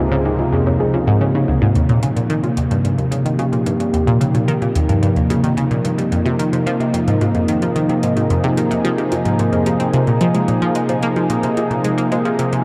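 Ambient, sequencer-driven space music at 110 BPM in 4/4, hypnotic and mysterious, set in a dark production with a huge ambient reverb. An evolving, detuned sawtooth pad sustains chords up front with chorus and shimmer reverb, while a nasal, bright analog pluck carries a low riff through chorus, phaser and analog delay, and a very quiet, gentle pluck traces arpeggios above. Electronic hi-hat and bongos enter at 1.8 seconds, their metallic, tape-warm hats echoing through analog delay as the harmony moves from Dbadd9 through Eb and Fmadd9 to Bbsus2 in this fragment of a longer piece.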